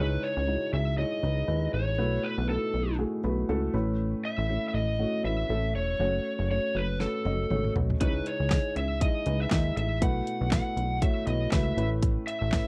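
A dark, overdriven lead guitar carries the melody over a woody upright piano with audible action noise and a punchy, funky sawtooth bass from the start, and at 7.0 seconds a fill brings in a punchy, fat-snared pop drum kit with handclaps, lending this dry, close, 1970s-style piano-driven pop excerpt a dramatic, bittersweet swing.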